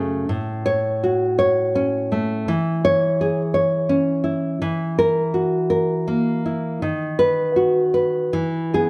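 A dark, up-front nylon-string guitar plays alone in this nostalgic, tender excerpt from a romantic classical solo piece in 3/4 with uneven, rubato beats, its fingerpicked lines and audible finger squeak ringing through a moderate recital hall reverb as the harmony moves from F#m/A through C#m/E, F#7/E and B/D# to E at 8.3 seconds.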